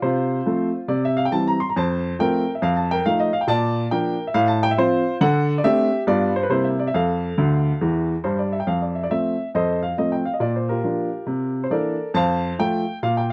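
A woody, natural upright piano plays solo and up front through this playful, exuberant stride jazz passage in F major, swinging at 139 BPM in 4/4 across two matching sections, with a fill from 7.4 to 8.7 seconds and chords moving through F7, Bb, G7 and C13 before settling on F, all set in a dark production with moderate studio reverb.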